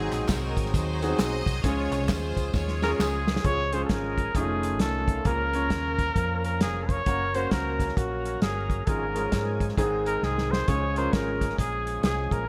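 A swung 133 BPM groove in 4/4 drives this jubilant, hopeful uptempo gospel in Db major, built on a dark, up-front soul drum kit, a round, punchy hollow-body electric bass, clear concert grand piano and a gritty overdriven tonewheel organ in the background with chorus vibrato, key click and slow rotary speaker. A lush, bowed string section carries the opening melody over close, dry handclaps and tambourine. A warm trumpet with vibrato and slapback echo enters at 2.8 seconds and takes over the lead when the strings and percussion stop at 3.4 seconds, the piano drops out at 11.4 seconds, and a light reverb sits over the mix of this cut from a longer piece.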